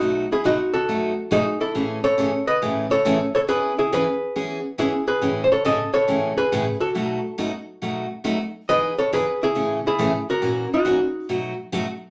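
A miked and amplified archtop guitar carries the melody up front, its clean, dark hollow-body tone picked out over a cheerful, down-home country groove at 138 BPM in E major with a swung eighth-note feel. A bright, full-bodied dreadnought steel-string acoustic, also picked and up front, supplies the accompaniment through changes such as B7, Amaj7, E6 and F#7/A#. The pair sit in a wet studio reverb, and the lead drops out at 11.3 seconds while the acoustic rings on to 11.9 seconds in this short cut from a longer piece.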